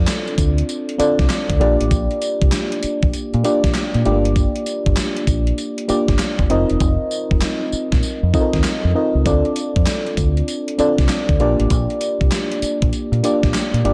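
New jack swing R&B at 98 BPM in 4/4, with a 65% swing on the 16ths that gives this short excerpt a slick, bouncy feel. A mellow FM electric piano sits up front with a soft, round tone, a faint noise layer, a fast attack that decays, and a chorus effect, voicing chords from Dm7 through Bb6, Gm7 and F7sus4 before returning to Dm7 and Bb6. Underneath, a deep fingered electric bass gives a dark, punchy low end, running from E1 to Bb2. A gated 80s digital drum machine enters at 0.1 seconds with a thumpy kick, a gated-reverb snare, handclaps, tambourine and hi-hat, its sampler-style kit overdriven and re-recorded in a small room. The hi-hats drop out between 6.8 and 9.3 seconds. The production is dark and warm overall, with a light reverb.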